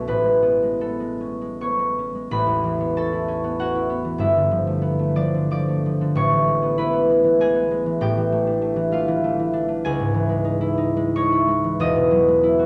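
Classical solo concert harp in a graceful, serene 3/4 with a rubato flow between 73 and 100 BPM, cut from a longer piece in A mixolydian, its fingerpicked, ringing strings sitting up front over a low E1 to a high D#6 in a dark, warm production and moderate recital-hall reverb, drifting from Amaj9 through G9 and Dmadd9/A before settling on Emaj9 at 11.8 seconds.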